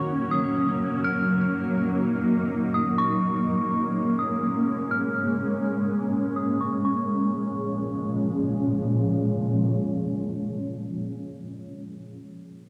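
A cloudy, blurred granular pad and an eerie, inharmonic synth bell open this spacious, ethereal hip hop excerpt together, with a filter sweep running under the opening 6.8 seconds as the harmony moves from Gb to Bbm7 in a half-time feel. The bright, up-front pad holds slow-blooming sustained chords through its own built-in reverb, while the mellow, chorused bell traces a high melody softened by tape echo and a dulling low-pass filter. The bell drops out at 8.3 seconds, leaving the pad to carry on alone until 11.0 seconds, all heard through the haze of a home cassette recording in a moderate room.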